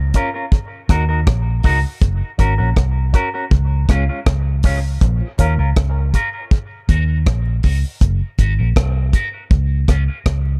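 A spacious, hypnotic dub reggae groove at 80 BPM in 4/4, cut from a longer piece, opens on a break where a dark, foam-muted, punchy fingered bass and a dry, deep drum kit with tight kick, hi-hat and rim click sit up front beneath a clean, picked envelope-filtered guitar sent into dub echo, while a filter sweep runs from 2.0 seconds onward over a Bbm, Ebm, Gb, Db cycle. At 5.0 seconds low-tuned, ringing congas enter barely audible, followed by a mellow, lightly overdriven tonewheel organ with chorus vibrato and slow rotary speaker in the background, plus a brief barky, reedy electric piano stab with fast tremolo and dub echo. The dark production carries a small room ambience.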